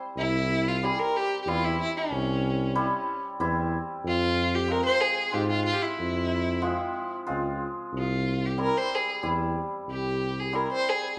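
A hammered dulcimer opens the recording at 0.0 seconds, its acoustic strings shimmering and ringing as it sets out the accompaniment in 3/4 at 93 BPM. At 0.2 seconds a bowed violin and a mellow tuba join, and the passage settles into a bittersweet yet festive klezmer mood in C phrygian dominant, with the harmony moving from C to F minor and back to C. The violin carries the melody up front with a warm, smooth, vibrato-rich tone and an even, gentle top end, a single player singing the tune in its middle register. Beneath it, the tuba holds down the bass up front with a punchy attack, its own vibrato and a soft upper edge, dropping out at 10.7 seconds. The band plays together in one large studio, and a moderate reverb gives the sound a natural sense of space. This is a short cut from a longer piece.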